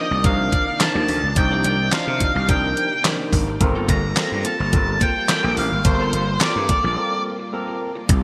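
A dark, fuzzy octave-fuzz lead guitar carries the melody up front in this funky, danceable early-eighties boogie funk fragment, its distorted tone trailed by delay until it stops at 7.2 seconds. Beneath it, a growly, overdriven slap bass punches hard and sits just as prominently, while a detuned 8-bit digital drum machine, the loudest part, drives the straight 4/4 groove with a thumpy kick, fat snare, hi-hat and handclaps bathed in gated reverb. A barky tine electric piano, lightly overdriven through a combo amp and thickened by lush chorus, accompanies underneath. A very quiet twangy, clean electric guitar picks a compressed riff, and a soft-attack sawtooth string machine holds sustained full-ensemble chords in the background. The harmony moves from Cm11 to Gm11, a break arrives at 7.0 seconds, and the whole sits in a moderate hall reverb with a bright 1980s-style digital sheen and lossy compression artefacts.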